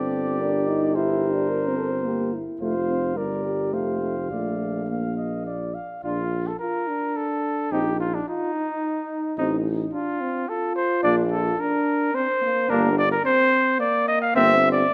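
A brass quintet opens together on a G minor chord, setting a warm, noble mood in a stately 3/4 at 108 BPM in B-flat major. The mellow trumpet carries the melody up front with vibrato and a soft attack, while the flugelhorn shades a second line beneath it with a warm, smooth top. The French horn, touched with light vibrato, and the trombone fill in the accompaniment with a vintage, band-limited tone, and the bass trombone anchors the harmony with a bright edge in its low register. After a first section, a second phase begins around 6.0 seconds, moving through richer harmonies and passing through B-flat and G minor before reaching a C5 chord over G. The recital hall adds a moderate, 1.5-second tail around close, detailed microphones, and the music breaks off at 14.9 seconds as a fragment cut from a longer piece.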